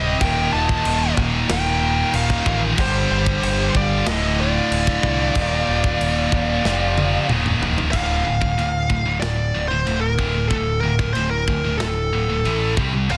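A straight 4/4 pulse at 93 BPM drives this aggressive, dark heavy metal excerpt in D phrygian. A tight, mid-forward metal drum kit with a medium-tuned snare, a clipped kick, toms, crash and china cymbals pushes a fill from 6.6 seconds into a new section at 7.9 seconds. A growling, overdriven picked bass sits under two scooped, bright high-gain riff guitars and a double-tracked distorted riff guitar that drops out at that change. Up front, a dark, distorted lead guitar carries the melody through tape echo, joined in the background by a second high-gain lead line that stops at 7.3 seconds, all within a dry, dense, heavily limited modern master.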